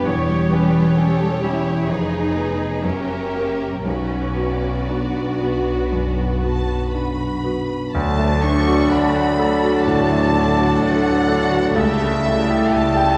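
A clear, polished concert grand piano carries the melody from the opening, its deep bass and long sustain set up front, while a lush bowed string orchestra surrounds it: violins also carrying the melody and adding a second line, violas filling the accompaniment, and a rich cello section joining the double basses on the bass. This classical passage, cut from a longer piece, moves in a rubato 4/4 at roughly 57-66 BPM, its tragic, brooding mood rooted in B minor through dark diminished and dominant harmonies. At 7.9 seconds the music turns to D major and the woodwinds and brass arrive: an airy flute ensemble high above, a mellow oboe and a very quiet clarinet on second lines, a close-miked bassoon in the accompaniment, and a tight French horn section holding soft-edged sustained chords. Most of the strings and winds sit in the background behind the piano, with expressive vibrato and soft attacks in the violins and basses. 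A wet scoring-stage reverb places the ensemble further back in the room, giving the whole a spacious, cinematic depth.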